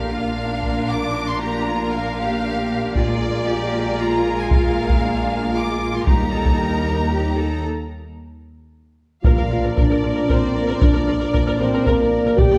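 At 115 BPM in a straight 3/4, taiko drums struck with heavy sticks drive this heroic, majestic slice of epic orchestral film score in Bb major, their close, dry hits entering at 0.6 seconds as the loudest part in the mix. Over them, a lush violin section carries the melody high in its range with vibrato and a smooth, focused top, while a second, more distant violin line, violas with an intense vibrato, and cellos and double basses filling out the low end sit further in the background. A mellow, tightly played French horn section holds sustained chords up close, giving the harmony, which moves from Bb through Bb7 to Eb, its solid core. After a break from 7.6 to 9.2 seconds, the music returns to Bb in a new section where a distant, loosely played trombone section and soft flute stops on a romantic-voiced pipe organ add very quiet sustained chords beneath the strings. Brief strokes of hard-mallet timpani on calf heads punctuate this closing passage, and the whole ensemble is heard from further back in a wet recital hall with a 1.5-second reverb.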